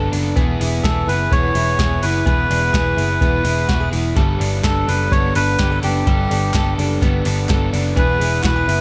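A reedy, breathy melodica carries the tune from 0.8 seconds in this breezy, youthful jangly indie pop excerpt at 126 BPM, over twangy clean electric guitar arpeggios with chorus and tape echo, an overdriven semi-hollow guitar, a round, foam-muted picked bass, a tape-warm vintage rhythm box with deep kick and metallic hats sitting up front, and a very quiet group handclap joining at 4.6 seconds, all moving from E to Gadd9 and back in an echo-heavy mix.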